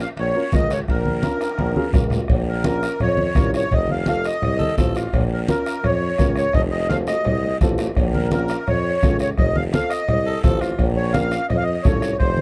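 The recording sounds close and detailed, with very little reverb, and this cut from a longer cumbia carries a driving, passionate mood in a straight four-beat pulse. A reedy, sweet accordion with a light tremolo tuning sits up front and carries the melody, while a warm, punchy tuba with light vibrato holds down the bass from a more distant, roomy spot. The percussion is layered: a soft-beatered bombo in a large room, bright low-tuned congas with a thin skin, a raspy guiro, and very quiet ringing timbales and cowbell heard from afar, with drum fills marking the turns. A dark, woody upright piano with short sustain supplies mellow accompaniment as the harmony moves between minor and dominant seventh chords. The standout colour comes from a gritty, growling tenor saxophone, close-miked and singing with vibrato, which adds a brief second line at 4.6 seconds and again at 10.3 seconds.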